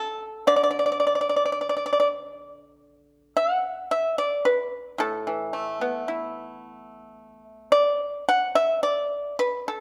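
A mellow, percussive solo pipa, played with fingerpicks and sitting up front, carries this flowing, elegant fragment of Chinese traditional music at a loose, rubato 54 BPM in 2/4, moving into a new section at 2.8 s and ranging from A2 to F#5 in D gong mode, with moderate recital-hall reverb and a faint mains hum behind it until the cut at 9.8 s.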